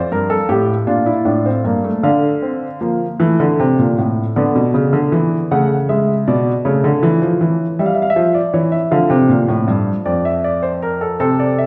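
Classical keyboard music in a baroque-style three-part fugue for solo grand piano, this short passage in D minor carries a solemn, contemplative mood. It moves at a slow 52 beats per minute, counted in dotted quarters within a straight 12/8 metre. A warm baby grand piano plays alone throughout, spanning F2 to F#5, its tone present and up front even though the listener is placed further back in a recital hall. A wet hall reverb, lasting 1.3 seconds, surrounds the instrument and lends the counterpoint a spacious halo. The harmony settles on D minor, shifts to a bare E7 chord around 4.4 seconds, then to A over C# near 6.7 seconds before returning to D minor as this fragment of a longer piece breaks off.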